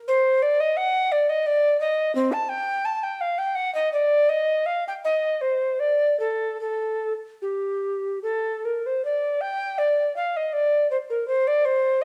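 A mellow tenor recorder plays alone from 0.1 to 12.0 s in this radiant, dance-like excerpt of a baroque-style classical fantasia in G minor, moving in a rubato 3/4 at around 72-87 BPM. The woody, airy tone carries vibrato and a crisp, chiffy attack, sitting up front, while a wet stone room's reverb lends a sense of space. A new section begins at 9.0 s.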